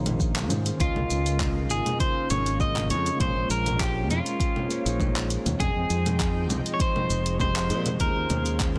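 Relaxed and sunny, this 100 BPM sunset chillout passage in Db lydian, cut from a longer piece, sets an up-front, slightly broken-up picked electric guitar melody with delay over a clean tine electric piano and a lush, detuned unison pad with chorus, both sitting in the background, while a bright fingered electric bass and a deep house kit of congas, handclaps, hi-hat and shaker, anchored by a deep, tape-warm electronic kick, move through Eb13sus4, Db69, Bbm9 and Fm7 under light reverb and a dense, heavily limited master.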